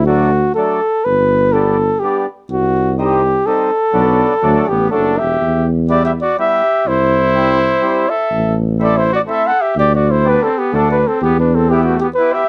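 A mellow flugelhorn carries the melody up front in this jolly alpine folk dance, its close-miked, classical-style tone shaded with light vibrato. Underneath, a tuba plays the bass with a warm, soft attack, sitting present and forward in the mix, while a reedy, full accordion fills in the accompaniment with a rich tone-chamber sound. At 4.7 s a clear trumpet joins with a second line in a classical style. The bouncy dance moves at 124 BPM in 3/4 with a gentle swing on the eighths, in G major, passing through chords such as G, Cm, Bm, Em and Am. Light reverb and a dark, warm production give this short cut from a longer piece a cosy, old-fashioned dance-band feel.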